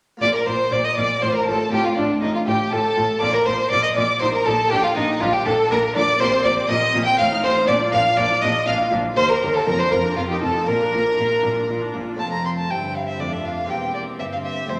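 Festive and brilliant, this excerpt from a baroque-style concerto movement in 3/4 puts a rich, smooth solo violin up front, its vibrato-laden melody carried over a chamber violin section playing an intense, clear line above it and a focused, close studio violin section on a second line. Beneath them, a distant, lush viola section and a full, brilliant Italian-style harpsichord supply accompaniment, while an even cello section and a smooth-topped double bass section anchor the bass. All the parts play together from 0.2 s to the cut at 14.8 s, bathed in the wet reverb of a recital hall, with the harmony turning toward the dominant at 12.2 s.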